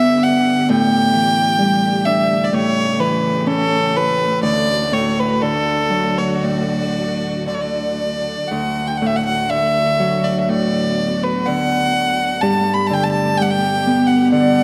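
Bathed in a wet concert-hall reverb, this tender, nostalgic Celtic slow air in D major drifts rubato at around 57-66 BPM. A rich, smooth fiddle with light vibrato sings the melody up front over fingerpicked, ringing Celtic harp, while a clear, focused string section holds sustained chords in the background, moving from G through A7sus4 and A7 to D and Gadd9. A reedy baroque flute slips in a brief tongued second line at 14.3 seconds, just as the cut from a longer piece ends.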